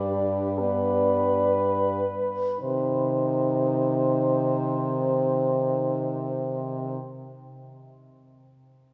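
Opening on a G chord that settles into C minor, this yearning, melancholic classical fragment for horn quartet unfolds at a rubato 30 BPM in 4/4, slowing through its first 2.6 seconds, with a warm French horn carrying the lyrical melody from Eb4 to D5 over a mellow, distant accompanying horn and a low bass horn reaching down to G2, while a clear, vibrato-tinged horn sits up front with a second line from 0.1 seconds, the quartet cloaked in a long, wet church reverb that places the listener further back in the room.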